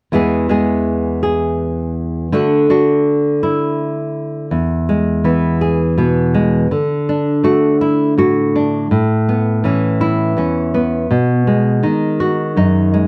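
Warm and gentle, this short folk excerpt from a longer piece moves at an unhurried 55 BPM in a steady 6/8, centered on E major. A lone nylon-string guitar, dark and classical in tone, is fingerpicked up front, ranging from E2 to G#4 as it moves from E to D before opening onto Aadd9 and B6 after 8.9 seconds. Close, detailed microphones and light reverb keep the sound intimate.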